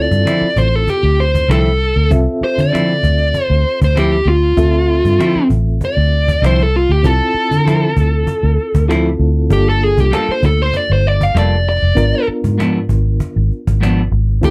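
Over a straight-eighth 4/4 groove with a light sixteenth-note swing, this smoky, brooding soul-blues passage is cut from a longer piece and features a dark, smooth overdriven lead guitar soloing throughout, its picked lines given a slapback echo. Underneath, a round, foam-muted vintage fingered bass sits up front, a snappy cajon with snares enters at 0.1 seconds, a reedy electric piano shimmers with fast tremolo, and a clean, hollow-bodied semi-hollow guitar adds picked stabs from 0.3 seconds. The dry, close 1970s-style studio sound frames a harmony that moves from Dm9 to Gm9 and then G#dim7.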